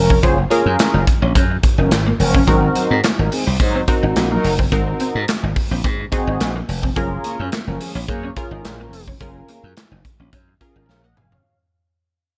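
This dry cut from a longer early-eighties boogie funk track rolls along at 107 BPM in a straight 4/4, smooth and feel-good, tuned slightly low to A4 = 438 Hz. The up-front modern studio drum kit pairs a punchy kick and medium-tuned snare with hi-hat, toms and handclaps in a pumping room sound, its gated reverb giving the hits their snap, and a drum fill closes things at 10.9 seconds. A bright, punchy slap bass, direct and amped, sits just as far forward, while a funky polysynth comp built from detuned sawtooth tones adds plucky, fast-attack chords with a moving notch and chorus, evolving as they sustain. In the background, a dark, clean picked electric guitar plays a riff through ensemble chorus, and a mellow synth brass carries a second line with round, brassy sawtooth tones, a soft attack and a filter sweep before dropping out at 9.0 seconds. The harmony moves from Ab7sus2 to Ab9 at 2.5 seconds, when a fade-out begins, and then to Gbmaj9.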